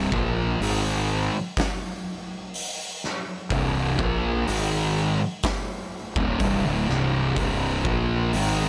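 A thick fuzz guitar leads this short excerpt of stoner and doom metal: a double-tracked, picked, distorted riff sitting up front and spanning C2 to Bb3 over a single C minor chord. Beneath it, a fingered electric bass adds a bright, growly overdriven fuzz between C1 and Bb1. An oversized, low-tuned acoustic drum kit of kick, snare and hi-hat enters at 0.1 seconds, with a boomy kick, a medium-tuned snare, and a saturated, gritty, pumping big-room character placed forward in the mix. The tempo is a slow 62 BPM in straight 4/4, and the mood is heavy and sludgy. The whole fragment, cut from a longer piece, lasts about 8.7 seconds and carries a light touch of small-room reverb.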